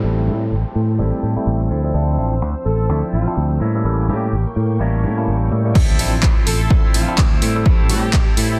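Groovy and nostalgic, this filtered disco house excerpt swings its sixteenths over a steady four-four pulse. A barky, overdriven tine electric piano plays the accompaniment through a phaser and sampler grit. It sits alongside a lush string machine with slow-attack sustained chords and a twangy, envelope-filtered guitar riff further back, while a fingered electric bass holds the low end up front. All of these parts pump with the sidechain and sit under a low-pass filter, and the filter sweeps through the opening 5.8 seconds as a downlifter sounds in the background. A clear, loosely played horn section with light vibrato carries the melody from 2.7 seconds. At the drop at 5.8 seconds, a punchy, tape-warm kick and an analog drum machine with handclaps, hi-hat and crash enter, with an impact marking the arrival over a dense, heavily limited master with light reverb.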